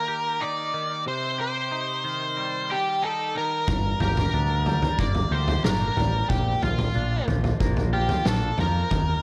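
An octave-fuzz lead guitar carries the melody from the first second, its dark, distorted tone placed up front in this brooding, angsty excerpt of quiet-loud alternative rock. Beneath it, a twangy electric guitar picks bright, clean arpeggios coloured by analog chorus and tape echo, moving through Eb and Cm before the harmony settles on Gm at 3.7 seconds and Bb later on. At that same 3.7-second mark, a growling electric bass enters with round, overdriven low notes, joined by a loose indie drum kit whose punchy kick, medium-tuned snare and toms sound roomy, with a rolled-off top. The tempo holds at 92 BPM in a straight 4/4, and the tuning sits slightly flat at A4 = 438 Hz. A light reverb gives the whole a modest sense of space.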